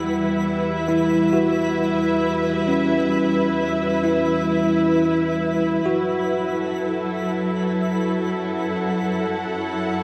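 A serene, melancholic ambient passage at 66 BPM in E minor opens on rich, vibrato-laden sustained string chords up front alongside bell-like, bright tine electric piano arpeggios with delay, while a twinkling granular texture with octave-up shimmer fades out and a clear, distant chamber cello section fades in on the bass. The harmony moves from Em69 to F#m7 at 5.9 seconds. A wet shimmer reverb and dark, warm production give this excerpt from a longer piece a soft, enveloping glow.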